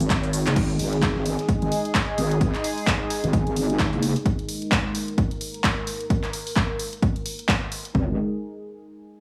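Bouncy and swaggering, this bass house cut from a longer piece rides a swung sixteenth groove, opening with overdriven claps, hi-hat, shaker and crash. A moment later, a drum fill arrives as a punchy house kick and toms enter alongside a very quiet, gritty sampler-style hi-hat and snare. A heavy, saturated wobble bass with chorus and sidechain pumping drives until 4.1 seconds and returns briefly at 7.9 seconds, while a bright, detuned sawtooth pad holds sustained chords through a filter sweep. Light reverb lends the mix a touch of studio air.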